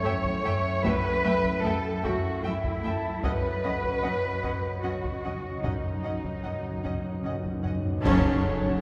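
Tense and ominous, this short excerpt from a suspense film score moves in a slow three-beat metre, cut from a longer piece and set in the wet reverb of a concert hall or church. Muted violin sections carry a veiled, dark melody and a second line in the background, over con sordino violas and a lush, very quiet double bass section, while the cellos sit up front with the bass line. A glassy, ethereal glass harmonica holds sustained chords with a slow, beating attack, and two fingerpicked concert harps ring beneath, one playing a low riff and the other a mellow texture that stops at 7.6 seconds. Taiko drums struck with heavy sticks enter almost at once, and hard-mallet timpani join at 3.2 seconds for a fill as the harmony shifts from A over F# to B add9 over F#. A cymbal swell with clash cymbals and concert bass drum builds from 5.7 seconds, and at 8.0 seconds a band accent lands on F# minor as very quiet, dark French horns and bright trombones enter with brief sustained chords.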